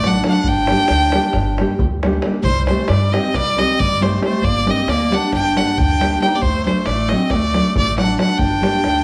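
Virtuosic and bittersweet, this short cut from a longer Balkan folk piece captures a wedding band in full flight, moving in a 9/8 metre with a straight feel. A biting bowed violin carries the melody up front, its clear tone shaded with vibrato and an intense edge. Beneath it, a clarinet plays a second line in a classical style, its soft attack and smooth top giving it a warm presence. A fingerpicked nylon-string guitar supplies accompaniment with a deep classical character, while an upright bass played pizzicato adds a woody low end. A davul rounds out the ensemble with a deep, vintage, band-limited sound, and the whole group sits in a recital hall reverb that lends a spacious, wet glow across the roughly 9 seconds.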